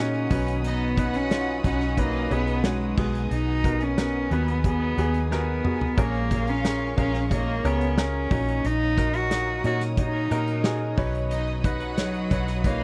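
A straight 4/4 pulse carries this anthemic, uplifting piano-driven pop excerpt, where a nasal, boxy solo cello sings the melody up front with vibrato, portamento and a slapback echo over a mellow felt-muted upright piano, a round, foam-muted fingered electric bass, a punchy acoustic drum kit played with bundle sticks that adds a fill at 5.3 seconds, a very quiet, bright, clean electric guitar riff recorded direct, and lush bowed string and violin sections holding sustained chords and a second line in the background of a dry, close 1970s-style studio sound.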